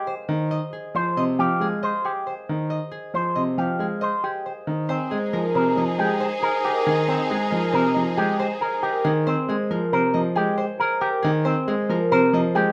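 A ringing, fingerpicked concert harp carries the melody from the opening, joined by the twangy arpeggios of an up-front electric guitar with an envelope filter, and a clear, vintage-toned grand piano adds smooth accompaniment from 0.3 seconds. This bright, propulsive minimalist pattern music moves at 137 BPM in 5/4, shifting from Ab major to F minor at 4.9 seconds, when a lush symphonic string section enters with bowed, vibrato-rich sustained chords that last until 9.0 seconds. The sound is close and detailed with light reverb, and the passage is cut from a longer piece.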